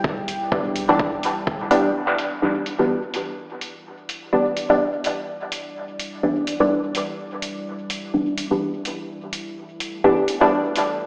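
Deep and hypnotic, this dub techno excerpt moves at 126 BPM in E minor with a swung 16th-note feel, resting on a single Em7 chord. A dark, detuned sawtooth pad holds sustained chords with chorus and sidechain pumping. A muted, mellow filtered chord stab sits up front with chorus, phaser and dub echo, while metallic, overdriven hi-hats run from 0.3 s to near the end. An up-front overdriven kick and a round, soft sub bass in the background sound only in the opening moments, with both gone by 1.8 s, and the mix is bathed in a wet echo-chamber reverb with the tone of an AM radio played through a big sound system in a bare room.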